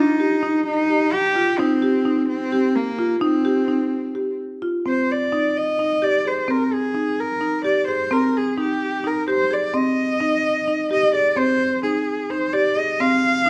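A moderate recital-hall reverb surrounds this 13.5-second fragment of contemporary instrumental music, a hypnotic yet urgent piece in 7/8 at 258 BPM counted in eighths, with a straight feel. Up front, a single bowed cello carries the melody with a soft attack, light vibrato and an intimate sul tasto tone, while a marimba played with medium mallets spins woody, boxy arpeggios on padauk bars alongside it. Both play throughout as the harmony moves from Ebadd9 to Eb69, then settles onto Ab/C when a new section begins at 4.9 seconds.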